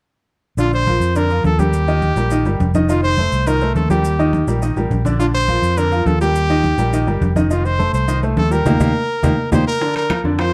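A brisk, straight 4/4 salsa groove at 208 BPM drives this festive, joyful fragment in Bb major, cut from a longer piece, with the chords cycling through Bb, Eb and F7. Up front, a bright, close-miked trumpet carries the melody between F4 and C5 with light vibrato and a pop-style touch, set in plate reverb, while a round, amped fingered electric bass anchors the low end from F1 to F2. A brilliant, woody upright piano with short sustain and audible action noise fills out the accompaniment, sounding intimate and polished. Ringing congas struck with hard hands sit in the background alongside grainy, mellow maracas, which drop out at 9.6 seconds. From 8.7 to 9.8 seconds a drum fill and a band accent push toward the return to Bb, after which dry, low-tuned bongos enter at 9.8 seconds and metal-shelled timbales ring in at 10.0 seconds. The whole mix has a dark, moderately reverberant studio character.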